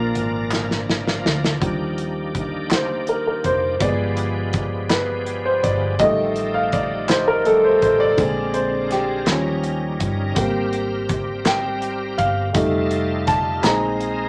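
A present, polished grand piano with long sustain takes a solo from 1.6 s in this uplifting, hopeful slow gospel excerpt in 6/8 at 55 BPM in Eb major, following a brief clean, compressed electric guitar phrase on Bb4 and a drum fill on a mid-forward studio kit with a punchy kick, while a bright, shouting tonewheel organ with slow rotary speaker, light overdrive and chorus vibrato holds sustained chords over a dark, round hollow-body electric bass, very quiet hollow handclaps and moderate studio reverb, the harmony moving through chords such as Ebmaj7, G7b9 and Abmaj9.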